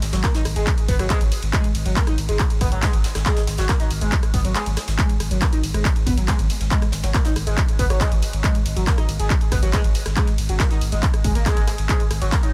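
Over a straight, driving 139 BPM 4/4 pulse in G# minor, this intense peak-time techno excerpt pairs an up-front, heavy, tape-warm electronic kick with a thick, saturated triangle sub bass pumping under sidechain and a low-pass filter, a layered techno kit of handclaps, warm hats, ride and rim clicks, a very quiet brushed vintage kit on hi-hat and snare, and a gritty, screaming, guitar-like overdriven synth lead riffing between F#3 and D#4 through phaser, lush chorus and dub echo, all kept fairly dry, with a brief break at 4.6 seconds.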